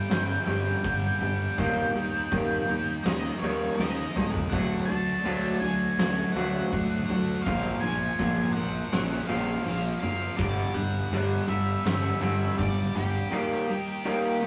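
A rough rehearsal-room sound in a stone-walled space carries this restless, anthemic stretch of quiet-loud alternative rock at 82 BPM in a half-time 4/4 feel, where a dark octave-fuzz lead guitar sings the melody over lo-fi, slightly broken-up arpeggios from a guitar through a small old amp, a bright overdriven riff guitar and a warm fuzz-picked bass, while an oversized low-tuned drum kit with a fat snare and punchy kick pumps the room, drops a fill at 3.8 seconds and falls away at 12.8 seconds as the chords cycle from G5 through D#, D and A#.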